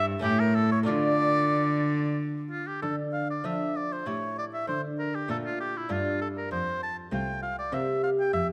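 A clear, up-front oboe carries the melody with light vibrato in a radiant, serene baroque-style sonata movement in D minor, moving in a rubato 3/4 at roughly 91-100 BPM and tuned to A4 = 442 Hz. Beneath it, a rich, reedy bowed cello with gut-string tone holds the bass close and forward, while a bright, delicate fingerpicked lute with double gut strings fills in the continuo accompaniment, with harmonies moving from A and D minor toward A7, F and C7. A wet concert hall reverb surrounds the trio through this short passage cut from a longer piece, which shifts into a new section at 2.8 seconds.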